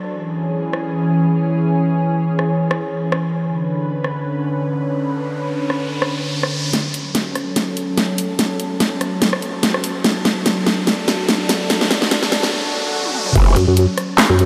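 A dreamy, reverb-soaked mix opens this menacing half-time wobble dubstep fragment at 145 BPM in F# minor, where a lush, detuned unison pad with vintage sampler grit and sidechain pumping carries sustained chords from C#m through Bmadd9, F#m and D. A layered electronic drum kit with a huge up-front snare enters at 0.7 s, and a riser and swell join at 4.6 s, leading into the build-up with drum fills from 6.7 s. At 13.4 s the drop lands on F#5 with a knocking kick, a brief burst of growling bass, and then a nasal, dark vowel-sweep wobble bass.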